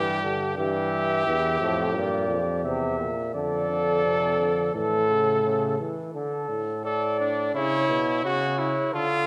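A trumpet, trombone and bass trombone open this serious, contemplative brass canzona together, written in an imitative classical style in D minor at 86 BPM in 4/4, tuned to A4 = 436 Hz. The trumpet carries a clear, present second line with vibrato, sitting up front. The trombone's accompaniment and the bass trombone's low line, touched with light vibrato, sound more distant and roomy. At 0.6 seconds a mellow cornet enters with the melody, and the bass trombone drops out at 5.8 seconds. The harmony moves from G5 through Edim, Dm/F, A and D5 before closing on a Bsus24 chord. A recital hall reverb gives the ensemble a wet, resonant space in this short passage cut from a longer work.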